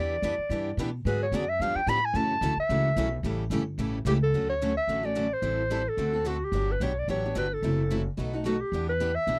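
Swinging at 219 BPM in 4/4, this playful fragment of acoustic string swing in D major puts a breathy, mellow clarinet up front, soloing with light vibrato and scooped notes through the first 4.3 seconds, over two picked steel-string acoustic guitars, one woody with old strings and one bright and boxy, and a thumpy pizzicato upright bass on gut strings, in a dry, close 1970s-style studio recording.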